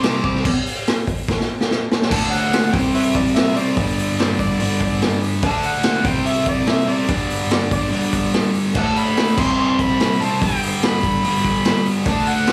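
A small-room ambience with light reverb frames this swaggering, raw garage rock cut from a longer piece, moving at 144 BPM in a straight 4/4 in G major. A thick, bright, double-tracked fuzz guitar drives the riff through D, C5 and G5 chords, while the raw garage drum kit sits up front with a gritty, saturated sound, a punchy kick, medium-tuned snare, hi-hat and crash, and a rolled-off top, with a drum fill from 1.3 to 2.1 seconds. Over them an amplified, overdriven harmonica takes the solo melody in a pop style, marked by tongue slaps and scooped notes.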